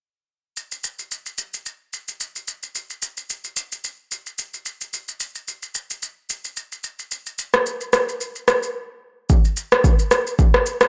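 Amapiano at 110 BPM in 4/4 with a light swing on the sixteenths, this late-night, deep excerpt features only a layered electronic deep house drum kit playing from 0.6 to 10.9 seconds, with its deep kick, rim click and shaker sitting up front. The kit is overdriven and re-recorded in a small room, giving it a gritty, produced character, while a moderate digital room reverb surrounds the sound. A short break at 8.8 seconds leads into a new section at 9.3 seconds.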